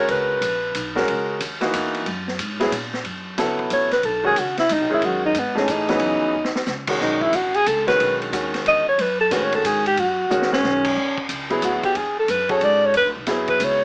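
A swung 3/4 pulse at 182 BPM drives this searching, hypnotic modal jazz excerpt, cut from a longer piece. It shifts from F# mixolydian to B mixolydian at 3.0 seconds, with the harmony moving from F#7sus4 to B9 and then to E69. A vintage acoustic drum kit sits mid-forward with dark cymbals, a high-tuned snare, a punchy kick and a rolled-off top, using ride, hi-hat, crash and toms, and it adds two short fills along the way. Underneath, a pizzicato upright bass with steel strings gives a woody low end, while a clear grand piano with short sustain stays up front in accompaniment throughout. The breathy alto saxophone, with light vibrato and a soft attack, sounds only briefly at the start and returns at 3.7 seconds for a jazz solo that runs to the end at 13.8 seconds. A moderate studio reverb and a small-speaker character frame the whole recording.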